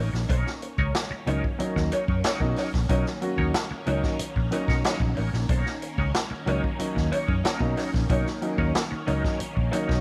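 Funk at 92 BPM in 4/4 with a sly, funky mood, this short cut from a longer piece rests on a rootless Bmaj9 chord. A round, foam-muted vintage electric bass and a punchy, up-front big-band drum kit with hi-hat, kick and medium-tuned snare carry the groove, while a slightly broken-up picked electric guitar with wah and lush chorus plays accompaniment over a swirling, sawtooth string machine that holds sustained chords in the background through ensemble chorus and phaser. At 1.3 seconds a dark, woody upright piano joins with mellow stabs, all set in light reverb and studio ambience.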